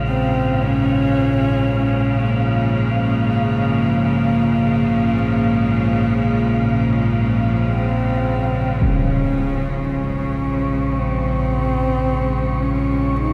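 Desolate and unsettling, this dark ambient drone in Bb minor drifts in free time, tuned to A4 = 436 Hz, and is cut from a longer piece. A deep, ominous drone rumbles underneath with a wave-folded, sawtooth-edged tone and its own reverb, while a breathy, wind-like tuned noise layer hovers high above, mellow and faint. A clear, earthy chamber cello section sits close and up front, holding sustained chords with light vibrato. From 0.1 seconds a single horsehead fiddle carries the melody with a husky, intimate voice, soft attacks, portamento and an airy bow, trailed by a diffuse ambient delay. At 8.8 seconds a huge, bright impact, muffled by a low-pass filter, marks the move from Bbm to Bbmadd9, and the whole scene is bathed in a cavernous cathedral reverb.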